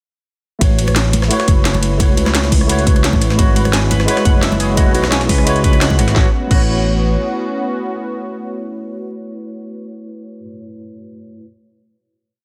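Rolling two-step drums at 173 BPM drive this short, uplifting liquid drum and bass piece in A major, where a punchy electronic kick, cracking snare and metallic hats, a gritty pitched-up breakbeat loop in the background, quiet congas and long gliding smooth synth bass carry a drop from 0.6 seconds beneath clean tine electric piano chords with ensemble chorus and tape echo, joined at 3.4 seconds by a soft detuned analog pad and bright picked semi-hollow guitar arpeggios with lush chorus and digital delay, before a final A6 chord arrives at 6.2 seconds, sustained by the piano and pad as the other parts fall away, in a dense, heavily limited mix with light reverb.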